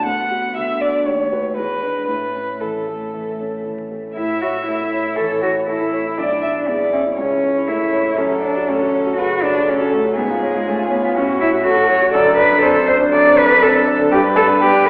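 A quick classical-period movement for piano trio in A major, this cheerful, graceful passage moves at 120 BPM in 4/4 with a rubato feel, cut from a longer piece. The violin carries the melody with vibrato and portamento, its expressive bowed tone warm and smooth at the top, while the cello plays a second line with light vibrato, a soft attack and an airy, intimate bow. Beneath them the baby grand piano supplies a dark, mellow accompaniment with a vintage character and long sustain, and all three instruments sit up front. The harmony passes from Bm/D through B7/D# and E7 to A, later touching F#m and C#/G# before closing on D7/F# and G at 14.1 seconds. The sound is heard from further back in a recital hall with a wet reverb, overlaid with vinyl crackle and a telephone-like tone.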